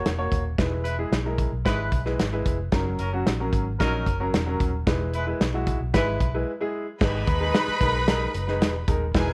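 A straight 4/4 pulse at 112 BPM drives this urgent, uptempo 1960s-style soul excerpt in G# minor, with a punchy-kicked, dark-cymballed drum kit up front, a round, foam-muted electric bass, and a woody upright piano cycling between F# and E. A mellow, roomy horn section enters at 0.8 seconds as a distant second line, and after a brief break at 6.5 seconds the harmony lands on G# minor at 7.0 seconds, where a lush, bright bowed violin section joins. A light reverb frames the whole performance.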